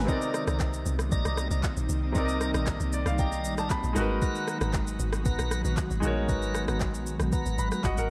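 A deep, round log drum bass with a dark, percussive FM character sits up front in this soulful amapiano excerpt at 116 BPM, moving over Cm9 and then Abm9 from 4.0 seconds. An overdriven electronic R&B kit with a soft kick, fat snare, handclaps, rim click and shaker drives the straight 4/4 groove, while a clear, polished baby grand piano plays accompaniment and adds fills at 2.7 and 7.3 seconds. An ethereal sawtooth pad with ensemble chorus, reverb and sidechain pumping sustains mellow chords beneath piping tonewheel organ stabs through a slow rotary speaker and digital delay, all within a dark production and light digital ambience.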